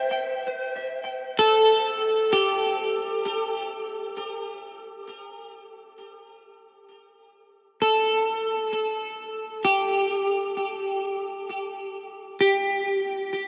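Ambient and peaceful in free time, this fragment of a longer piece features a lone electric guitar at the edge of break-up, bright, twangy and scooped, picked up front with lush chorus and tape echo between G4 and A4, sounding from 0.0 to 3.3 seconds and again from 7.8 to 13.3 seconds, all bathed in a huge, wet reverb with an 8.4-second decay and the warbly pitch drift of worn cassette tape, tuned to A4 = 441 Hz.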